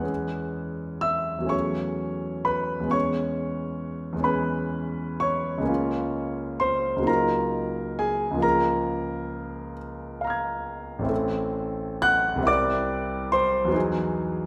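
Dreamy and serene, this impressionist classical excerpt features a solo concert grand piano drifting in a slow, rubato 6/8 at around 40-49 BPM, ranging from A1 up to G#6 across its 14.5 seconds. The piano sounds clear and intimate, placed up front with deep bass and audible action noise, while a recital hall reverb adds a soft, lingering bloom. Its lush extended harmonies glide from E6 through C#m7/E and D#m9/C# to Am6 and C9 before settling on Emaj9.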